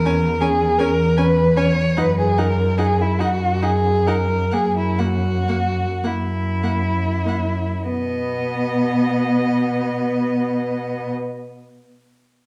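This classical slow romantic movement for string quartet, in B major and 12/8, moves serenely at 31-55 BPM with a rubato feel, slowing through the first 7.9 seconds before settling on a B major chord. A violin carries the high melody with vibrato and expressive portamento, while a second, rich-toned violin plays a smooth, even inner line, the viola adds a close accompaniment with soft attacks, and a warm cello holds the bass with vibrato and portamento. The harmony passes from C#m/E through F#69 and F#7 chords, set in a dark production with recital hall reverb.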